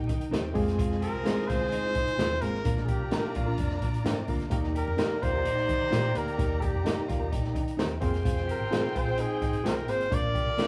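Vinyl crackle and a small-room, live-band reverb frame this joyful, uplifting 1960s-style soul excerpt in Eb major at 129 BPM, where a mellow, forceful trumpet with scooped notes carries the melody up front from 1.0 s over a punchy, dark big-band drum kit, a round, foam-muted fingered electric bass, and a reedy electric piano with fast tremolo, while a slightly broken-up lo-fi guitar riff, clean fingered guitar stabs, an edgy, tight saxophone section and a bowed string section with vibrato and portamento sit in the background.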